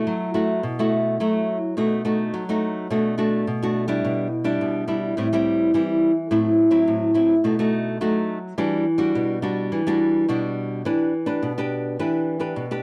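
A dark, small-sounding nylon-string guitar, fingerpicked and placed up front, carries this lively, yearning samba alone in E minor at 106 BPM, tuned slightly flat to A4 = 438 Hz. Its chords move from B7sus4 through Gmaj9/B, Am7 and F#m7b5/A before settling on Em9, with a new section beginning at 10.9 seconds on Em7. A wet studio reverb surrounds the playing, and the clip ends at 12.8 seconds, cut from a longer piece.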